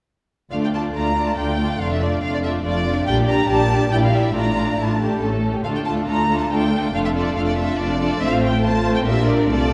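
In a quick 141 BPM triple metre pushed and pulled by rubato, this stormy, urgent D minor excerpt from a classical-period string orchestra movement opens at 0.5 s with the first violins carrying a close, expressive melody marked by vibrato and portamento over a focused second violin line, smooth and distant violas, even double basses, and warm cellos set in the background, all heard from further back in a reverberant scoring stage.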